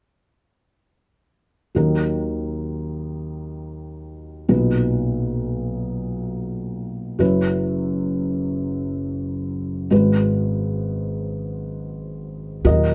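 Nostalgic and tender, this folk excerpt in 6/8 centers on a felt-muted upright piano that carries the melody from 1.7 s. Its tone is soft, dark and intimate, and the thick felt and audible action noise give it a vintage, up-front presence. The piano ranges from a low F#1 up to D#5 as the harmony moves through D#m, Bmaj7, F#7sus4 and G#m7. Only at 12.6 s does an upright bass appear, playing a single woody pizzicato D#2 on steel strings. A light reverb surrounds the recording, and the clip, cut from a longer piece, stops at 12.9 s.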